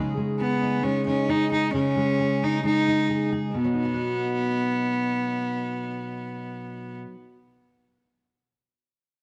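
In a straight 4/4 feel, this brief folk fragment cut from a longer piece has a nostalgic yet hopeful mood: a full-bodied, fingerpicked jumbo steel-string acoustic guitar with fresh strings sits up front from the start, a single clear, earthy cello with an airy bow and light vibrato carries the close, up-front melody from 0.4 seconds, and the harmony moves from C#sus2 to B at 3.5 seconds, all set in a small room with light reverb and colored by worn, warbling cassette tape with a warbly pitch drift.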